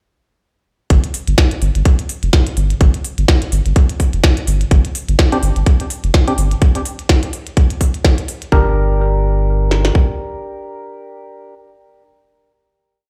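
Sparse and clinical, this complete minimal techno piece in G minor runs at 126 BPM in 4/4 with a 57% swing on the sixteenths, the whole thing heard through a big sound system in a bare room with a large studio reverb. From 0.9 seconds a drop kicks in: an overdriven electronic click kit sits up front with a tight four-on-the-floor kick and a tiny snare, while a second, quieter overdriven kit adds clicky programmed closed and half-open hats and a backbeat snare, both kits carrying the boxy character of a small room. Underneath, a deep, thick, saturated sine sub bass rolls out a staccato groove between F1 and G1, pumping against the sidechain. At 5.3 seconds a hollow, organ-like stab enters, its mellow, decaying chords layered with noise, treated with chorus and echoing digital delay, and moved in parallel as one shape between C4 and Bb4. The hats drop away at 8.5 seconds as the music settles onto a final G minor chord, with the stabs ringing on until 11.5 seconds.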